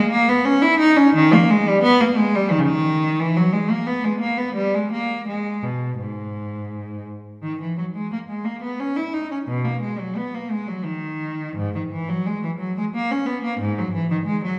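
A single bowed cello opens the recording, playing alone from the very first moment in a baroque-style suite movement. The tone is rich and focused, coloured by vibrato, and the player moves in a triple metre with a supple, rubato feel. The line spans from the low G#2 up to E4, and the mood is radiant and serene. At 7.4 s the opening material returns for a second pass, carrying the excerpt to its close at 14.6 s, where it is cut from a longer piece. The cello sits up front yet sounds slightly distant, wrapped in the lingering reverb of a church or concert hall.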